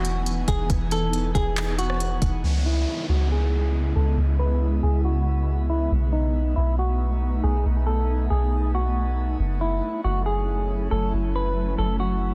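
The rhythm sits in a half-time 4/4 feel at 138 BPM, carried briefly by a smooth R&B drum kit of soft kick, smooth hi-hat, handclaps and rim click that sounds tape-warm and roomy, playing only until 2.3 seconds. This cut from a longer atmospheric cloud-rap track in C# minor feels spacious and ethereal, moving through Emaj7, C#m7, B7 and F#m7. A soft 808-style bass, deep, round and dark, stays up front throughout, while an airy, detuned pad holds sustained chords under ensemble chorus, reverb, sidechain pumping and a low-pass filter. A clean, fingered semi-hollow electric guitar carries the melody through tape echo and its own low-pass filter. From 2.4 seconds a filter sweep runs to the end, and a faint electronic downlifter passes between 2.4 and 5.9 seconds, all within a dense, heavily limited modern master.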